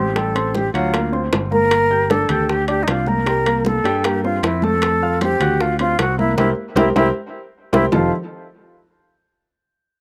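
An airy, vibrato-laden concert flute carries the melody up front over a warm baby grand piano with audible action noise and a bright, growly picked electric bass in this sunny, danceable Afro-Cuban jazz excerpt at 154 BPM in F major, as tight high-tuned bongos, thick-skinned congas and ringing metal-shell timbales join in the background at 0.2 seconds, slapback echo touches the flute, piano, bongos and timbales within a dry outdoor sound, and a band accent from 6.4 seconds with a drum fill at 7.2 seconds leads into an F9 chord.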